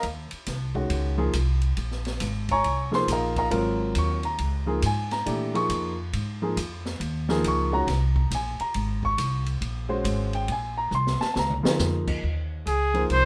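A swung 4/4 pulse carries this hypnotic, spiritual modal jazz fragment, where an intimate grand piano with audible action noise accompanies over a woody, thumpy pizzicato upright bass and an open acoustic drum kit, with dark cymbals, a high-tuned snare and a boomy kick, that plays a fill at 10.9 seconds, before a smooth-topped trumpet with light vibrato steps up front at 12.7 seconds for a brief solo, the whole set in light reverb.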